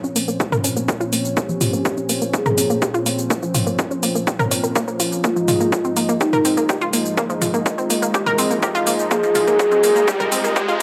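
Melodic techno with a dark, driving mood, this build-up moves from Bbmadd9 to Fm7/Ab as a lush, detuned unison pad holds sustained chords and a round sawtooth analog pluck spins bright arpeggios through analog delay, both pumping against the sidechain while filter sweeps work across them and the lead. A house kit of metallic hi-hats, shaker and toms, re-recorded in a large room, plays from the start, and a punchy, overdriven electronic kick arrives at 0.4 s up front. From 1.4 s an expressive, smooth sawtooth lead sings with vibrato, chorus and tape echo, and a background riser enters at 6.9 s, all set in a gritty hardware sound with a lush hall reverb.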